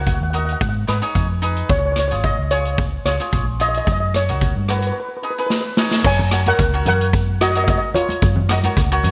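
A bright 1980s-style digital production with light reverb and small-room ambience carries this bouncy, carefree calypso excerpt in F# major at 110 BPM, where a shimmering, metallic steel pan leads the melody over crisp picked cavaquinho, a dark, round hollow-body electric bass and an up-front street-band drum kit with a boomy kick, dark cymbals and gated reverb, whose fill at 5.5 seconds ushers in a new section as ringing, soft-handed congas join in the background at 6.2 seconds.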